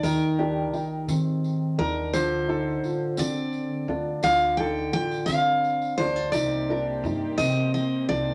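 Acoustic folk for a duo or small band, reflective and melancholic, moving in a slow 6/8 at 57 BPM through Ebmaj7, Dm7 and Cm7 in this brief excerpt. An up-front, full-bodied picked steel-string guitar carries the melody over a small fingerpicked nylon-string guitar, mellow arpeggios from a felt-muted upright piano with audible action noise, woody pizzicato upright bass and a jingly tambourine. At 6.3 s a dark chamber string section enters with sustained sul tasto chords and light vibrato, the whole blend sitting in a wet studio reverb.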